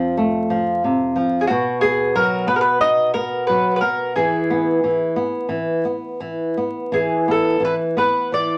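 Loosely rubato in 4/4 at about 89 BPM, this short, longing and passionate fado-style ballad excerpt sets a round, double-strung picked mandolin melody up front over a fingerpicked flamenco guitar accompaniment, equally close and warm in tone, moving from F to B5 to E, with a wet studio reverb and a vinyl crackle lending the sound an aged intimacy.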